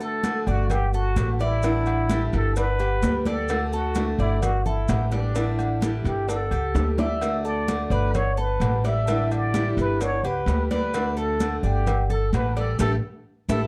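A breathy, plunger-muted trumpet sings a vibrato-laden jazz melody up front over bright fingerpicked steel-string guitar, metallic Cuban tres arpeggios, damped congas and grainy maracas from the opening moment of this relaxed Cuban son and guajira at 129 BPM, with tight bongos and cowbell plus ringing timbales and agogo bells joining at 0.2 seconds, a woody, thumpy pizzicato upright bass arriving at 0.5 seconds, a drum fill near 6.8 seconds and a closing band accent, in a dark production with light reverb, cut from a longer piece.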